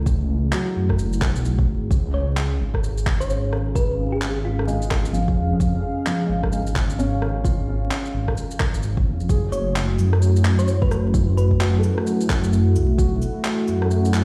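Ghostly and melancholic, this future garage cut at 130 BPM in F# minor swings on 16ths over F#m7 and C# chords, with a soft felt-muted upright piano carrying dub echo and audible action noise, a moody chorused analog pad, and a rumbling detuned saw bass up front, all three pumping to the sidechain beneath an overdriven deep electronic kick and layered shaker, handclaps, rim click and cabasa, while a round, tine-like thumb-piano-style synth pluck with chorus and delay surfaces at 2.1 and 9.5 seconds, the whole mix heard as if played on a big sound system in a bare stone room with vinyl crackle.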